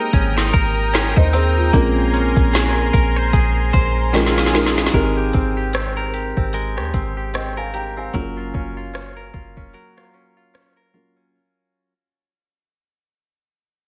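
Contemporary R&B with a smooth, dreamy mood and a gently swung 16th-note feel, cut from a longer piece. A felt-muted upright piano plays dark, intimate accompaniment, its thick felt and audible action noise close at hand. A clean, direct-recorded electric guitar adds bright, twangy arpeggios through a tape echo, and a lush, detuned unison pad with chorus holds sustained chords until 4.9 seconds. Underneath, a round, sine-like 808-style bass sits up front beside a smooth drum kit with a woody snare, soft kick and gritty 12-bit sampler character, and a drum fill leads into the second section as the music begins to fade. The bass drops out at 9.7 seconds for a closing break, and the dry, close sound carries little reverb.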